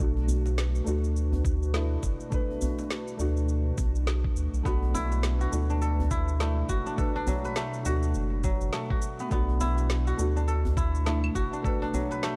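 Organic downtempo with a mystical, hypnotic pull, this excerpt rests on a single Bm7 chord. A soft, felt-muted upright piano with audible action noise and a warbling, detuned tape-like pad pump under sidechain, while a round, up-front sub bass with tube saturation anchors the low end and a djembe with metal rattles plays alongside an electronic shaker, woody snare and claves, with a gritty, overdriven electronic kick drum thumping in from 1.4 s. At 4.7 s a crisp, ringing kora enters with fingerpicked arpeggios roughened by 12-bit sampler grit and delay, within a dark production with small room ambience.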